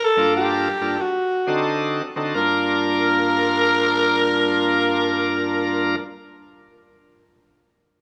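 A straight 4/4 pulse slows down over the first 2.3 seconds of this smoky, brooding blues fragment, cut from a longer piece. A raspy, gritty tenor saxophone carries the melody up front from the very start, a jazz-style solo voice with a soft attack, light vibrato and a slapback echo. A bright tonewheel organ joins at 0.2 seconds as full, shouting accompaniment, lightly overdriven and turning through a slow rotary speaker. The harmony moves from Gm7 to D7b9 and returns to Gm7. Both parts sit up front in a light studio reverb.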